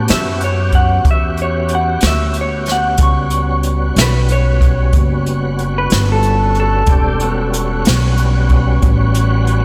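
Laid-back and gritty, this slow 12/8 blues fragment rests on a thick, overdriven tonewheel organ holding a rootless A13 chord through a slow rotary speaker with chorus vibrato and audible key click. A woody, thumpy pizzicato upright bass and an up-front jazz brush kit with a boomy kick and medium-tuned snare carry the groove. Above them, a slightly broken-up, lo-fi electric guitar through a small old amp sings a picked, compressed melody with slapback echo until 7.8 seconds, all set in a lush hall reverb with a big arena sound.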